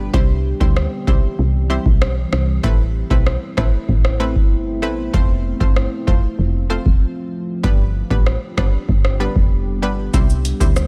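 A booming analog drum machine sits up front in this bouncy, sunny dancehall excerpt at 96 BPM in C major, its deep kick, metallic hats, rim click and shaker carrying the sound of a large room, with a brief break from 7.0 to 7.6 s. Beneath it, a woody, round FM bass with a fast attack and a decaying tone anchors the progression of C, Amadd9, F and G, returning to C at 10.1 s. A bright, detuned sawtooth pluck with chorus supplies the accompaniment, while a dark, moody pad with a sub octave, a moving notch, built-in reverb, chorus and sidechain pumping holds sustained chords underneath.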